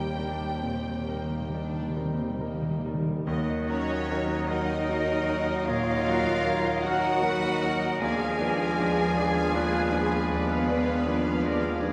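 Lyrical and passionate, this rubato romantic movement in 12/8 sets a clear concert grand piano up front carrying the melody with a deep bass, while a lush bowed string body sits behind it: a rich violin section on the melody, a second violin section on a focused countermelody, very quiet violas, smooth cellos and a distant double bass section, all with vibrato. Timpani played with medium mallets add a close, dry fill before the harmony darkens to the minor at 3.3 s, where a bright solo oboe, a mellow distant clarinet and a clear bassoon join, along with dark French horns and vintage-toned trombones holding sustained chords and soft-attack trumpets adding stabs. A pure, hollow flute enters at 3.7 s and the timpani stop at 9.1 s, as a diminished chord over the low bass colours the close of this passage, which is cut from a longer piece, all bathed in the wet reverb of a recital hall.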